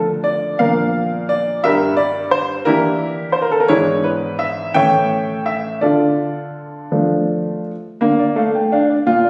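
A clear baby grand piano opens alone in D minor, playing a short fragment cut from a classical-period sonatina that runs just over 9 seconds. The mood is cheerful and elegant despite the minor key, moving at a gentle 57 BPM in a lilting 6/8 with a free, rubato feel. The piano covers G2 to G5 with a natural, up-front tone and short sustain, tracing a progression from Dm through Bb, Em7b5/G, E7/G# and A7 before settling back on Dm at 5.8 seconds. At 8.0 seconds the opening section begins again. The sound sits in a wet recital hall reverb captured on a phone in the room, with added studio reverb and compression, and the tuning rests slightly low at A4 = 439 Hz.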